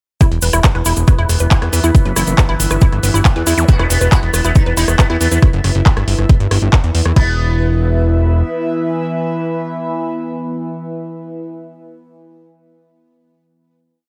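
A punchy four-on-the-floor electronic kick drives this hypnotic, intense psychedelic trance piece from 0.2 seconds, joined by a techno kit of metallic hi-hats, handclaps, rim clicks and crash, hand-played cabasa sixteenths, and a fat, detuned sawtooth bass rolling in sixteenths under a filter sweep. Over the pumping drop, a woody, wave-folded pluck loops an accented acid line drifting against the bar. A resonant drone of moving, ring-modulated overtones sits beneath it, and an airy, breathy pad with slowly shifting chords hovers alongside. A faint electronic zap marks the sitar's entry at 3.7 seconds, its buzzing, shimmering riff repeating over a pedal note through phaser and delay, and it rings on with the drone and pad into the final chord after the beat stops at 7.2 seconds, all set in light digital ambience.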